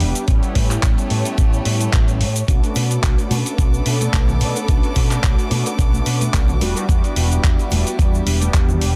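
Cosmic and groovy, this 109 BPM nu-disco cut in B minor with a light swing rides a thumpy, gritty electronic kick up front and a dusty soul sampler-style kit of handclaps, hi-hat and shaker, under a round, punchy picked electric bass through an envelope filter, mellow detuned synth brass with chorus and tape echo, and a rich, close violin section holding sustained chords with sidechain pumping, while egg shaker, bongos and congas join in the background at 2.5 seconds, moving from A7 to Bm7 and Em7 in a dense, dry, heavily limited mix.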